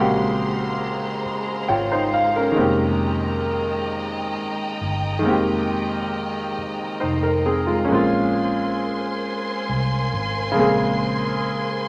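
A slow six-eight R&B groove carries this late-night, yearning fragment cut from a longer piece, moving from Bbm9 to Fm11 and back to Bbm9. A clear, up-front grand piano plays the accompaniment and adds a fill from 1.2 to 2.6 seconds, while a lush bowed string section holds smooth, expressive chords with vibrato above a dark, round, foam-muted fingered electric bass. A wet, large studio reverb surrounds the ensemble.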